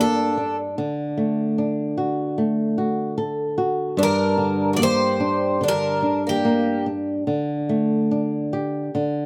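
Fado-style ballad in G harmonic minor at a rubato 74 BPM, passionate and longing, where two picked twelve-string acoustic guitars, one full-bodied and shimmering up front with the melody and one boxy with a second line beneath it, both drop out at 6.8 seconds, while a dark, fingerpicked flamenco guitar with audible finger squeak carries the accompaniment up front through to 9.3 seconds over Gm, D and a closing Dsus4, each guitar touched by slapback echo in a dry outdoor setting.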